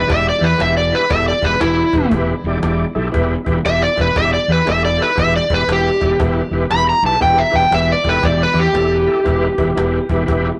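Blues rock power trio with a southern rock edge, this gritty, brooding swung cut from a longer piece is led by an up-front overdriven slide guitar soloing through tape echo over thick, gritty tonewheel organ chords on a slow rotary speaker with chorus vibrato, a growly, punchy fuzz bass, and a woody cajon with faint snares sitting in the background, all wrapped in the rough tube-saturated sound of a small rehearsal room on a single E minor chord.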